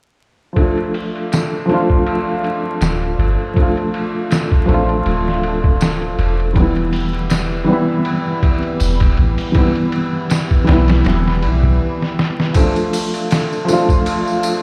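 A mellow, felt-muted upright piano coloured by harmonic tremolo and tape echo carries the accompaniment in this melancholic, brooding trip hop excerpt at 80 BPM in D dorian, moving from Dm to Em over a gritty, pitched-down sampler-style drum kit with a thumpy kick, a faint band-limited tambourine, and a deep, round 808-style bass with tube saturation that enters at 2.8 s and drops out at 11.8 s for a brief break and a drum fill at 12.0 s, the mix sitting in a stone room reverb dusted with vinyl crackle.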